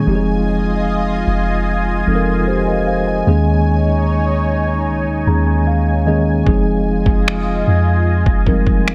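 A mellow tine electric piano, a lush detuned pad shimmering with chorus and phaser, and a deep, round 808-style bass open this sensual, late-night contemporary R&B excerpt over Fm7 and Eb7sus4 chords, with the piano adding a fill at 4.9 seconds before a gritty, compressed sampler-style kit of finger snaps and thumpy kick enters up front at 6.5 seconds, all set in light digital reverb.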